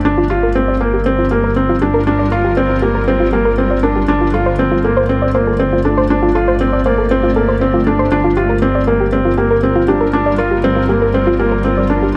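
A felt-muted upright piano sits up front with a soft, intimate riff, its thin felt tone trailed by tape echo, in this cinematic G minor electronica excerpt at 119 BPM. Beneath it, a dark detuned saw bass holds a deep, rumbling G1 with a beating, saturated edge, while a round pluck traces gentle arpeggios through chorus and tape echo. A cloudy granular pad drifts in the background with blurred, evolving chords moving from Gm7 to F6/G at 4.1 seconds and back, all inside a lush hall reverb.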